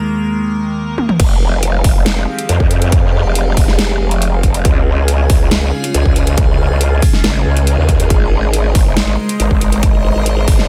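Dense, heavily limited and lightly reverberant, this menacing, chaotic cut from a heavy half-time wobble dubstep track opens on a morphing, bright wavetable pad through a brief build-up, with a dubstep drum kit entering on a fill at 1.0 seconds; the drop at 1.2 seconds then brings in a punchy, up-front electronic kick and an aggressive, saturated, wobbling growl bass with chorus and overdrive, while the kit's huge snare, metallic hats, crash and toms fill out the mix and the phased, sidechain-pumping pad sustains chords moving from Ebsus4 through Fmadd9, Db and Abadd9.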